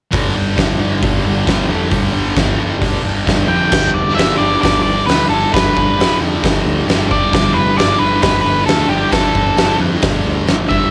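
Raw and swaggering, this short cut from a longer garage rock piece drives along at 133 BPM in a straight 4/4, centred on G mixolydian. A thick, bright fuzz guitar, double-tracked and up front, carries the riff from the opening moments, moving from a G5 power chord to G around 3.7 seconds. Underneath sits a growling picked electric bass, overdriven with tube saturation and set back in the background, while an oversized low-tuned drum kit pounds out kick, snare, hi-hat and crash with a boomy kick, fat snare and dark cymbals in a pumping room sound. At 3.5 seconds an octave-fuzz lead guitar enters up front with a dark, distorted melody high above the riff. The whole thing has the gritty, saturated feel of a home cassette recording in a small room, with the guitars carrying a tape character of their own.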